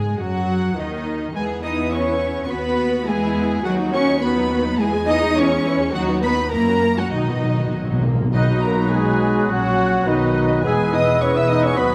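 Cheerful and spirited, this brief passage from a quick classical-period orchestral movement in B major moves at 104 BPM in a straight 2/4, with chamber-sized strings playing sul tasto throughout: violins carrying the melody and a second line with soft attack and light vibrato, over dark violas, woody cellos and smooth-topped double basses. Round, soft-mallet timpani enter at 7.1 seconds with a fill, and at 8.3 seconds the winds join in the background (an airy flute ensemble, a roomy oboe, a clarinet and a mellow bassoon) as the brass arrive, with distant French horns holding sustained chords and dark trumpets adding stabs from the background. The whole ensemble sits in a wet scoring-stage reverb.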